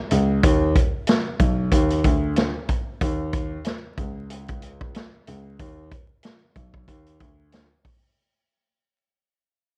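A swung 16th-note boom-bap groove comes from a vintage acoustic drum kit, with a punchy kick, a medium-tuned snare and hi-hat heard up front in a studio room, its sound rolled off at the top. Alongside it, a dark grand piano, also up front, carries the bass line in a low register, mellow and boxy in tone, for a moody, reflective hip hop feel. Close and dry, the excerpt wears the haze of worn cassette tape, vinyl crackle and warbling pitch drift, fading out across its full 8.2 seconds.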